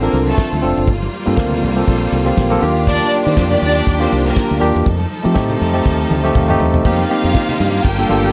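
A joyful, celebratory disco groove opens with a worn, slightly out-of-tune tine electric piano up front, a lush bowed violin section carrying a second line, a clear string section holding sustained chords and a round, punchy fingered bass, all over a lightly swung sixteenth-note feel. A damped 70s drum kit with a fat snare, tight kick and rolled-off top enters at 0.1 seconds alongside distant, very quiet congas, and a grainy egg shaker slips in behind at 2.9 seconds. The drums and electric piano both play fills from 5.9 seconds into a brief new section on a suspended chord, all in light studio reverb and cut from a longer piece.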